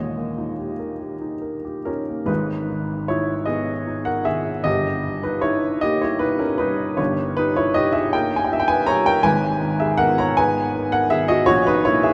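Swaying in a slow 6/8 at roughly 46-55 beats per minute, counted in dotted quarters, this romantic nocturne moves with a free, breathing rubato. It is a short cut from a longer classical piece in G# minor, carrying a wistful, mournful mood. A lone upright piano carries everything from 0.0 to 12.1 seconds, spanning G1 to A#5 with a woody, intimate tone, its action noise audible and its sound placed up front. The opening on D# gives way at 2.3 seconds to a longer passage that settles on G# minor, passes through D# harmonies over G, returns to G# minor, and closes on F# over A#. A vast, echoing cathedral reverb with a long 5.8-second decay surrounds the instrument, so each phrase hangs in the air of the enormous space.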